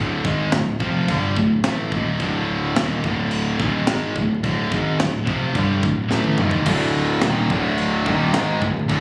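Bright, high-gain guitar riffs, with a double-tracked distorted guitar further back, open this relentless, dark heavy metal excerpt at 108 BPM in D phrygian over a growly picked electric bass, and a tight, gritty drum kit with a high-tuned snare, china and crash cymbals joins at 0.2 seconds. After a drum fill at 6.1 seconds, a second up-front high-gain guitar riff enters at 6.7 seconds. The whole is heard through a phone recording in a small room with club reverb, vinyl crackle and compression.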